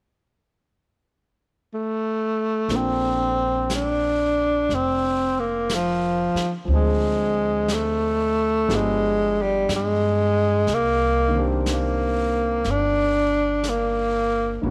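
A breathy tenor saxophone opens this fragment at 1.7 s, playing the melody alone in its low register before the band arrives, setting a tender, romantic mood for a slow jazz ballad with a gentle swing. At 2.7 s the piano, upright bass and brush drum kit enter together beneath it on a Bbmaj9 chord, and the harmony then moves through Dm7b5, G7b9 and Cm9. The saxophone sits up front as the soloist, its mellow tone carrying light vibrato, scooped notes and a smooth top. A warm, natural-sounding concert grand with deep bass stays in the background, while the pizzicato upright bass adds a woody, growly low end. Brushes on the snare and hi-hat sit quietly underneath, and light studio reverb rounds out the recording.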